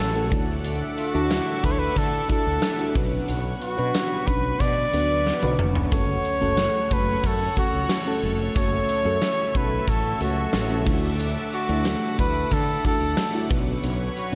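A steady, straight 4/4 pulse at 91 BPM drives this nostalgic, romantic slice of 1980s-style pop in D major, carried by a huge arena drum kit with a punchy kick, fat snare, bright cymbals, hi-hat, tambourine and toms, which comes in at 0.3 seconds and breaks into a fill from 5.3 to 5.9 seconds. Underneath, a woody fretless electric bass sounds round and growly, while an FM electric piano layered with a soft pad adds dreamy, chorused chords that strike fast and decay. Above it, a sweeping resonant pad holds sustained sawtooth chords with a slow attack, filter swell and ring-modulated shimmer, and a biting overdriven guitar sits very quiet in the background. Up front, a clear flugelhorn sings the melody with vibrato and a smooth top, trailed by delay. The harmony moves from Dadd9 to Bmadd9 and F#m before returning to Dadd9 and then Bmadd9, all set in a lush hall reverb within a dark production.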